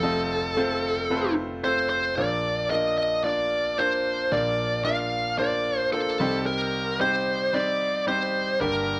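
A dark, distorted overdriven lead guitar with slapback echo carries a bluesy melody from the very start over a brilliant, deep-bassed concert grand piano, moving through F, Bb and C minor at a driving 112 BPM in a bittersweet pop fragment captured with a dry, close 1970s-style studio sound and light reverb.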